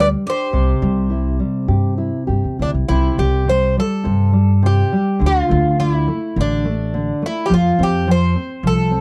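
A fado-style ballad in 4/4 with a loose, rubato feel, this short excerpt carries a longing, mournful mood. A Greek bouzouki takes the melody up front, its bright, metallic double strings picked with some octave doubling. A picked twelve-string acoustic guitar adds a shimmering, boxy second line with a hint of swing, but only for the opening 2.2 seconds. Beneath them, a nylon-string guitar fingerpicks a deep classical accompaniment where finger squeaks can be heard, and an upright bass sits up front, played pizzicato on gut strings with a woody, thumpy tone. The harmony moves from C through Dm to F, and the recording is dry and close, in the manner of a 1970s studio with little reverb.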